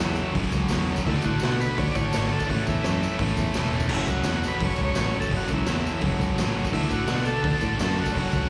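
This short cut from a longer piece sounds like a live gig heard through the venue's PA, with small-room reverb and a recital-hall tail around a raw, gritty garage rock band at 169 BPM in straight 4/4, in F# minor. A thick, bright fuzz guitar sits up front, double-tracked and picked, driving a distorted riff with slapback echo from F#2 up to D4. Beside it, an overdriven combo organ with a buzzy, vintage tone and light vibrato carries the melody between E4 and D5, also treated with slapback echo. A second, mellow, clean combo organ holds sustained chords in the background. A picked electric bass with tube saturation anchors the low end, and the raw drum kit hits boomy kick, medium-tuned snare, hi-hat and crash with a saturated, rolled-off top. A jingly tambourine enters at 0.1 seconds deep in the mix, and the chords move from F#m to D, A, back to F#m at 3.9 seconds and D at 6.7 seconds.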